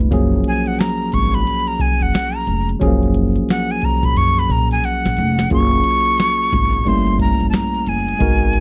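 A breathy jazz flute with vibrato and a crisp, chiffy attack sits up front from 0.5 s, carrying a solo until 5.5 s in this smooth, relaxed, swung jazz-hop excerpt. A clean, bright tine electric piano and a woody, thumpy pizzicato upright bass provide the harmony, while a booming analog drum machine with a deep kick, tonal snare and metallic hats adds a fill at 4.8 s. Moderate studio reverb gives the sound a gentle sense of space, and the harmony moves from a major seventh chord to a diminished seventh in the closing section.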